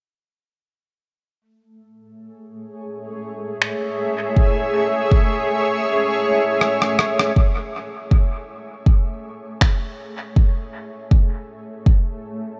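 Meditative and hazy, this ambient dub excerpt drifts at a relaxed pace with a gentle sixteenth-note swing, cut from a longer piece. A granular cloud pad holds sustained chords from 2.6 seconds, its blurred, evolving tone carrying built-in reverb and a vintage 12-bit sampler grit. Sampler-style electronic finger snaps and a rim click arrive at 3.6 seconds, compressed and muffled, with a low-pass filter on the snare, small room ambience and dub echo. A deep, tape-colored electronic kick drum sits up front from 4.4 seconds, drops out briefly as a drum fill plays, then returns as the second section opens and the pad fades in. A huge ambient reverb with a long five-second tail surrounds the mix, deepening its cloudy, suspended atmosphere.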